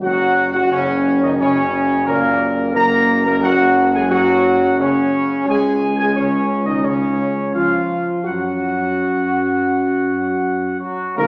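Majestic and regal, this classical ceremonial fanfare in F# major moves at a stately 80-89 BPM in a straight 4/4, heard as a passage cut from a longer piece. A dark, distant trumpet section carries the melody up front, while a roomy French horn section and a smooth-topped trombone section with light vibrato hold sustained chords beneath it. A solo tuba with a soft attack anchors the bass, also placed up front and touched with light vibrato. The harmony rests on F# before shifting to C# at 5.5 seconds, then moves away from any defined chord from 8.3 seconds. At 11.2 seconds a close, dry tam-tam with a dark cymbal tone strikes just as the brass parts close at 11.3 seconds, all set in the wet reverb of a scoring stage.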